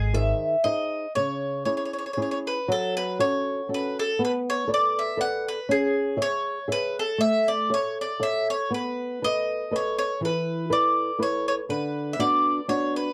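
A mandolin and a flamenco guitar start together, opening this romantic, passionate Italian serenade, a short cut from a longer piece in F# minor. It moves at 120 BPM in a straight 3/4 lilt. Up front, the mandolin carries the melody with a round, picked tone from its double strings, singing between G#4 and F#5. Beside it, the acoustic guitar gives a dark, boxy, thumb-plucked accompaniment with a flamenco edge, ranging from C#3 to E5. After a brief opening phrase, a longer passage begins at 2.7 seconds and passes through F#m, Bm7, C#m, A, B7 and Esus4 before settling on Bm/D. Light reverb and a cassette-tape grain give the whole recording a soft, aged intimacy.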